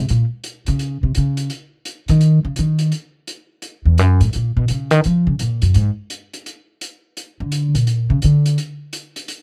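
Cool and late-night, this short jazz trio excerpt in Bb minor swings in 4/4 at 169 BPM, tuned to A4 = 439 Hz, as a woody, up-front pizzicato upright bass on steel strings takes a solo from 0.0 to 8.6 seconds over a muffled, lo-fi hi-hat with a rolled-off top that sounds from 0.1 to 9.4 seconds in a small, dry room with little reverb.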